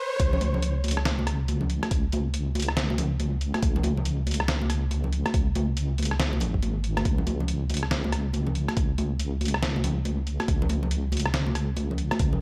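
A deep, wobbling bass sits up front, its detuned sawtooth and sine tones thickened by chorus and tube saturation into a dark, sustained growl with a fast attack, moving between G#1 and C#2. This is a cavernous, heavy slice of deep dubstep at 140 BPM in 4/4, with a half-time feel and 62% swing on the sixteenths. The drop lands at 0.2 s, where a layered electronic kick with a tape-warm depth anchors the low end beside a gritty, pitched-down sampler-style trip hop kit of hi-hat, rim click and a medium-tuned snare, both set in a small room ambience. Congas join at 0.3 s, played with hard hands and sounding ringing, acoustic and saturated, trailing a dub echo behind each stroke. The mix is dry, with a high-pass filter shaping the whole, and the passage is cut from a longer piece.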